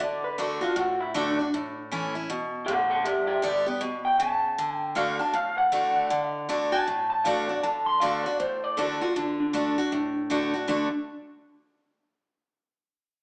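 A twangy, slightly broken-up electric guitar through a small old amp carries the melody with spring reverb over a full-bodied, picked steel-string acoustic guitar with audible finger squeak, both up front in a retro, upbeat swung rock excerpt played live in one room, with a large studio reverb and a small-speaker sound.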